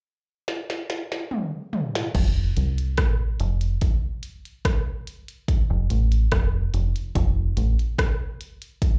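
This sunny, laid-back roots reggae excerpt in F major moves at an unhurried 72 BPM in straight 4/4, cut from a longer live performance heard through the venue's PA with club reverb. At 0.5 seconds a minimal, electronic-sounding drum kit opens with a fill that runs to 2.1 seconds, sitting up front with a deep kick, a tiny snare, clicky hi-hats, rim clicks, toms and a crash cymbal, its produced sound re-recorded in a small room. At 2.1 seconds a fingered electric bass enters. Dark, round and foam-muted, it is played direct and amped, staying low between F1 and C2 and sitting just as far forward as the drums. The bass drops out at 7.8 seconds, and the drum kit carries on alone until 9.0 seconds.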